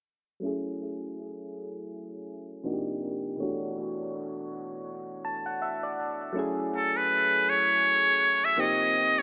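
A filtered, AM-radio-like haze with a moderate echo-chamber reverb and heavy echoes frames this short cut from a longing, sensual R&B piece at 81 BPM in F# minor, with a gentle swing on the sixteenths. Soft, round electric-piano-like synth keys with chorus and dub echo carry the accompaniment from 0.4 seconds through chords like F#m7, Cm11 and Bm11, under a filter sweep, and add a fill near 4.9 seconds. At 6.8 seconds a buzzy, thin trumpet with a metal mute enters up front, playing a jazz-style solo melody with light vibrato and its own dub echo.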